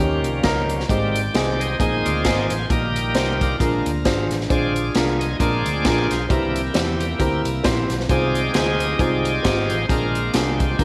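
A lightly reverberant small-room sound frames this reverent, hopeful uptempo gospel passage, cut from a longer piece, swinging at 133 BPM in 4/4 over chords moving from Eb7 through Abmaj7, C7 and Fm7/C to Bb7. Up front, a bright, shouting tonewheel organ with overdrive and a fast rotary speaker takes the solo throughout, while a woody upright piano accompanies and adds a brief fill from 0.2 to 0.9 seconds. A round, punchy fingered electric bass anchors the low end, a polished big-band drum kit with a medium-tuned snare and hi-hat joins at 0.2 seconds, and a dark, distant French horn section holds very quiet, soft-edged sustained chords beneath.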